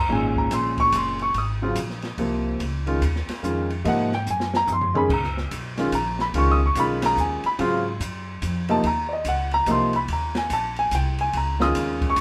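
A vintage-toned baby grand piano and a woody upright bass begin together, with an open jazz drum kit joining at 0.1 seconds in this relaxed, playful small-group swing and bop piece in 3/4 at 144 BPM. The piano sits up front with a smooth, warm sound, comping through Ab13, Dbadd9 and Db13 voicings in Ab mixolydian before an Eb5 chord near the close. Underneath, the pizzicato bass on steel strings gives a dark, low foundation, while the drums, recorded in a small room, blend dusky cymbals, a medium-tuned snare, toms and a boomy kick into a swinging groove. A brief drum fill between 4.3 and 5.1 seconds leads into the Db13 chord. Light reverb adds a touch of space to this short swinging fragment, cut from a longer performance.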